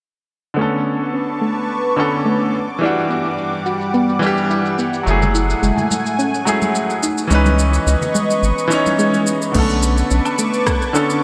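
Sunset chillout at 107 BPM with a gentle sixteenth-note swing, wistful and relaxed, drifting through Bm9, Em9, F#m9 and C#m9 chords in this short cut from a longer piece. A bright, intimate baby grand piano with audible action noise sits up front through low-pass filtering and digital delay. It is joined by a lush, detuned unison pad treated with chorus and phaser, soft round pluck arpeggios with chorus and delay, and a tape-warm deep house kit of crash, rim click, shaker and woodblock under gated reverb, with filter sweeps on the drums and arpeggio until 9.5 seconds. A deep, nasal analog bass enters up front at 5.1 seconds, with ringing congas following in the background just after, and an electronic kick arrives at 9.5 seconds, all bathed in a wet hall reverb and bright 1980s-style digital production.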